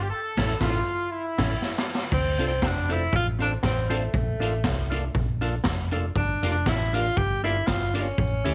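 Mischievous and driving, this short ska excerpt moves at 119 BPM in D minor with a light swing on the eighth notes. A clear, punchy horn section with slapback echo states the opening melody up front for under two seconds, over a round, dark hollow-body electric bass that runs through the whole clip. From 0.4 seconds a street-band drum kit with a boomy kick and medium-tuned snare joins in, along with a clean, compressed hollow-body jazz guitar and a fat, lightly overdriven tonewheel organ on slow rotary speaker, both sitting in the background. The opening bars carry a band accent and a drum fill, leading at 2.1 seconds into a tenor saxophone solo that is warm, distant and roomy, with light vibrato. Beneath the solo the harmony moves from Dm7 to Bbmaj7 to Gm7, all set in a small room with a layer of vinyl crackle.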